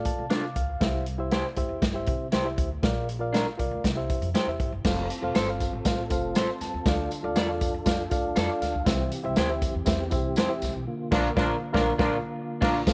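This short cut from a longer uptempo 1960s-style soul piece opens with a reedy, up-front electric piano with a fast tremolo, playing a brief fill over upright bass and a vintage drum kit, and a twangy, slightly broken-up electric guitar enters with stabs at 0.3 seconds. The groove sits at 120 BPM in a straight 4/4 in F major, with a danceable feel. The drums have a punchy kick, a medium-tuned snare and dark cymbals, while the pizzicato upright bass sounds woody beneath them. At 4.9 seconds the second section brings in a soft, flute-like tonewheel organ holding sustained chords with chorus vibrato and key click, along with a jingly tambourine in the background. The electric piano adds another fill near 8.1 seconds, and at 11.1 seconds a mellow horn section with light vibrato slips in behind as a second line while the band plays an accent to close the cut. Light reverb and studio ambience give the whole a warm studio room feel.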